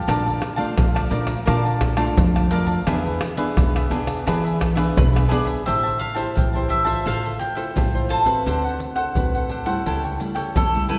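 Steeped in a wet, spacious hall reverb, this lively, bittersweet samba-and-choro passage, cut from a longer piece, sets crisp picked cavaquinho and full-bodied fingerpicked classical nylon-string guitar over a woody, thumpy gut-string pizzicato upright bass and an up-front, close and dry blend of egg shaker, deep surdo, pandeiro and tamborim played with soft hands, before a mellow, double-strung bowl-back mandolin takes up the melody at 5.0 s.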